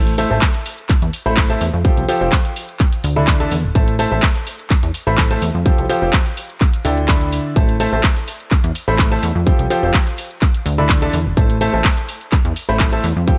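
A digital ambience surrounds this energetic, soulful piano house cut, taken from a longer piece and moving at 126 BPM in a straight 4/4 in A minor. A clear, intimate grand piano sits up front with its action noise audible, playing a riff from the very start through 13.4 seconds, treated with sidechain pumping and dub echo. Beneath it, a plucky, funky analog bass built from sawtooth, pulse and triangle waves with ring modulation and a fast-attack, decaying filter pluck also pumps with sidechain compression. A dry analog drum machine supplies handclaps and hi-hat from 0.1 seconds, and a layered, punchy electronic kick drum joins at 0.4 seconds, sitting up front in the mix. The harmony cycles through Am, Fadd9 and Dsus2 before returning to Am across the whole section.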